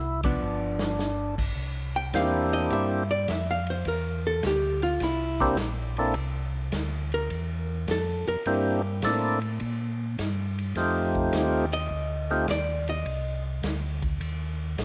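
Soulful and bluesy, this soul jazz organ trio cut from a longer piece swings at 104 BPM in C mixolydian: a drum fill and band accent open it before a hollow-body jazz guitar solo takes over at 1.6 seconds, as the chords move from G7 to C7 and then F7. A clicky, percussive tonewheel organ carries the melody and a round, dark second organ with chorus vibrato holds the bass, both turning through a slow rotary speaker. A dark, compressed, picked archtop guitar sits up front, and a big-band kit adds a boomy kick, medium-tuned snare, hi-hat, ride and crash, all in a small room with light reverb.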